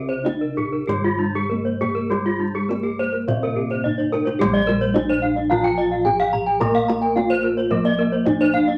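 A ringing bronze metallophone melody leads this brilliant, shimmering Balinese gamelan passage in Bb slendro, moving at 93-109 BPM in a straight 4/4. It sits over a lower metallophone accompaniment, two arpeggio metallophones and round, beating bossed gongs. The metallophones' paired tuning gives them shimmering beats: one is struck with mellow padded mallets, the others with horn mallets, some of them bright and airy and others with a band-limited vintage colour. A tight, hard-handed kendang plays a fill from 4.0 to 4.4 seconds before the second section, all within a short club-style reverb and a layer of vinyl crackle in this cut from a longer piece.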